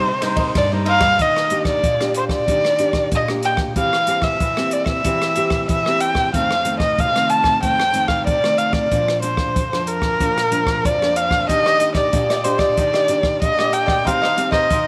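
An intimate, up-front erhu carries the melody in this playful, festive samba and choro excerpt, its bowed line full of vibrato and portamento, with an airy, boxy tone. Fingerpicked classical nylon-string guitar supports it throughout, a crisp, picked cavaquinho sounds briefly at the start and returns at 11.5 seconds, and an open jazz kit entering at 0.2 seconds adds hi-hat, rim click, dark ride cymbal and a boomy kick in a small, polished room. A moderate echo-chamber reverb colors the ensemble as the harmony moves from Cm7 through Ebmaj7, C7/E, F7 and Bb before returning to Ebmaj7.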